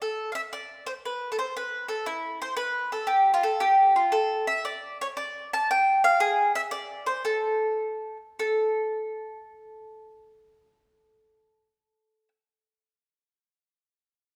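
Italian folk in A minor and a rubato 6/8 feel, this passionate, romantic excerpt from a longer piece features a solo acoustic mandolin, bright and woody with picked double strings, placed up front in a reverberant recital hall, moving at roughly 98-119 BPM, tuned to A4 = 437 Hz, and slowing down between 6.2 and 8.4 seconds before the phrase shifts to a new section.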